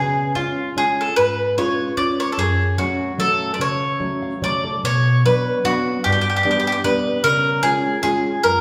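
Italian folk serenade in a lilting, lightly swung triple metre, wistful and passionate in mood, cut from a longer piece. A picked bowl-back mandolin carries the melody up front with a warm, double-strung tone, while a dark, full-bodied nylon-string guitar fingerpicks the accompaniment alongside it and adds a fill from 4.0 to 4.8 seconds as the harmony shifts toward B minor. Both ring out in the wet reverb of a recital hall, giving the pair a church-like resonance.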